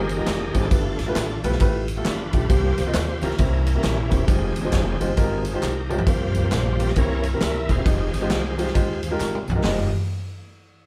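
A bright, shouting tonewheel organ takes the lead from the start, lightly overdriven through a fast rotary speaker with chorus vibrato, over a warm baby grand piano and a woody, thumpy upright bass with gut strings in this solemn, fervent uptempo gospel excerpt with a swinging feel. An up-front big-band drum kit with a punchy kick and medium-tuned snare drives the groove on hi-hat, ride and toms, adding fills at 5.6 and 9.2 seconds, while a close, dry egg shaker and group handclaps sit in the background. Rich chords such as Fm11, G13 and C7b9 colour the harmony, and light reverb gives the sense of a band playing live in one room.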